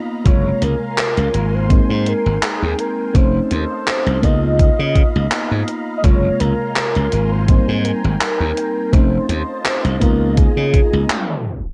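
Vaporwave at 83 BPM in 4/4 with a light swing on the sixteenths, this woozy, dreamy excerpt is cut from a longer piece and sits slightly off standard pitch. A mellow FM electric piano carries the accompaniment with a round, warbling, vintage tone, softened by subtle chorus and tape echo. Above it, a soft string machine holds silky sustained chords through a phaser and ensemble chorus, while a velvety synth lead enters at 0.3 s with a smooth, gliding melody touched by chorus and tape echo. A glassy slap bass, bright and growly with tube saturation, sits up front beside a thumpy electronic kick, and a gated 80s digital drum machine adds handclaps and hi-hat drenched in gated reverb. The harmony cycles through Gbmaj9#11, Abmaj9, F7b13 and Db13, the whole mix carries a cassette tape character, and a tape stop drags the music to a halt from 11.1 s.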